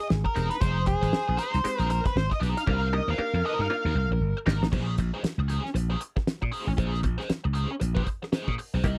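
An up-front octave-fuzz lead guitar, dark and distorted, carries the melody in a solo over the opening 4.7 seconds, shadowed by a whispered, breathy tenor saxophone with vibrato and scooped notes, as a drum fill runs from 2.7 seconds. Underneath this cool, hypnotic funk groove at 117 BPM with a swung sixteenth feel, a growly, punchy slap bass and a damped 70s drum kit with fat snare and tight kick sit up front, while a biting overdriven guitar through wah and a hollow, nasal muted clav add accompaniment and stabs over chords moving from Fm7 to Cm7 and then Bbm9. The dry, close 1970s-style studio sound keeps every part intimate and immediate in this excerpt.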